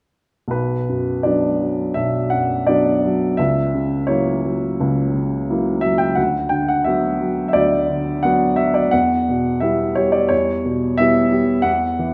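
Romantic classical character piece for solo piano, brooding and stormy, moving in a flexible rubato that pushes and pulls against its 4/4 metre. A woody, polished upright piano sits up front and plays alone from 0.5 to 12.1 seconds, ranging from deep bass notes to the upper treble over dark minor-key harmony. A wet recital hall reverb gives the short fragment, cut from a longer work, a lingering, resonant tail.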